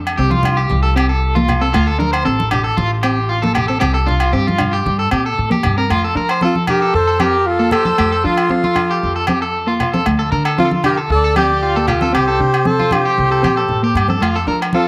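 Warm and carefree, this highlife guitar band groove moves at 115 BPM in F major, with woody pizzicato upright bass, a dark, fingered electric guitar with analog chorus, and ringing agogo bells and soft-handed congas setting the pulse from the start. Up front, a twangy, slightly broken-up electric guitar plays arpeggios through tremolo and tape echo, and at 6.4 seconds a breathy, whispered alto saxophone takes the melody while a trumpet with scooped notes sits in the background on a second line. A moderate echo-chamber reverb surrounds the band.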